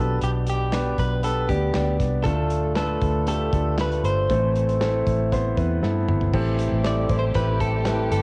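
A straight 4/4 pulse at 118 BPM drives this hopeful, uplifting piano-driven pop excerpt, where a clear, intimate concert grand with audible action noise moves through G/B, Dm and Amadd9 beneath a clean, picked, direct-recorded electric guitar melody, a round, foam-muted vintage bass sits up front, a loose indie kit with dark cymbals, handclaps and a tight kick plays a fill at 5.8 seconds, and a distant, woody, bowed string section arrives at 6.3 seconds, all wrapped in moderate spring reverb and the character of a home cassette recording.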